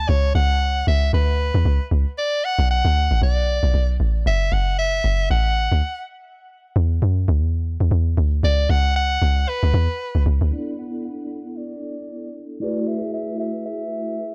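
A bright soprano saxophone with vibrato and a smooth top carries a soulful pop-style melody through low-pass filtering and analog delay, over a deep, round log drum bass with a dark, percussive attack, in this deep, swung amapiano excerpt. At 10.5 seconds the log drum stops and a mellow tine electric piano enters with clean, chorused chords beneath the saxophone as a filter sweep runs until the end at 14.3 seconds. The dry, gritty hardware sound sits in a small room.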